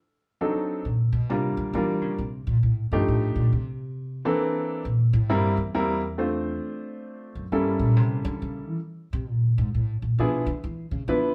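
Playful, swinging jazz waltz in 3/4, cut from a longer piece, with a vintage-toned grand piano carrying the melody from 0.4 s in a clear, smooth voice with short sustain, while a pizzicato upright bass on gut strings enters at 0.8 s with a woody, thumpy sound and holds the solo spotlight. Both instruments sit up front, captured live together in one room with a large studio reverb. The harmony moves through colourful altered dominants and lush extended chords.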